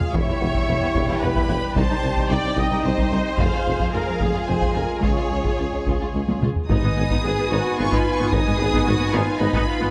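Cinematic, epic orchestral film score in a dark 3/4 at 111 BPM, where lush bowed violins carry a vibrato melody over a second violin line, clear violas, rich cellos, woody double basses and a background tuba, while mellow French horns hold sustained chords, compressed, saturated taiko drums play with a fill from 6.3 seconds, and a very quiet, round timpani touches in at 6.7 seconds, all set in a moderate scoring-stage reverb.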